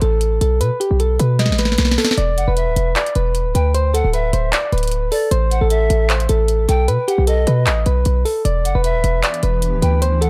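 A dark, eerie trap excerpt cut from a longer piece opens with soft, round electric-piano-like synth keys carrying the melody in E minor, softened by chorus and a low-pass filter. A punchy, heavy 808-style bass with a sine body and a noise layer sits up front, while a booming analog drum machine plays at a half-time feel of 153 BPM with a crisp snare, metallic hi-hats and handclaps in a short room. A drum fill at 1.4 seconds leads into the second section, and at 2.4 seconds an airy, woody pan flute joins as a close-miked second line with vibrato, tongued notes and delay. The harmony moves from Asus2 through E5, D7sus2 and A5 to Em7. At 9.2 seconds a cloudy, blurred granular pad enters with sustained chords and its own built-in reverb, over a dark, dry production.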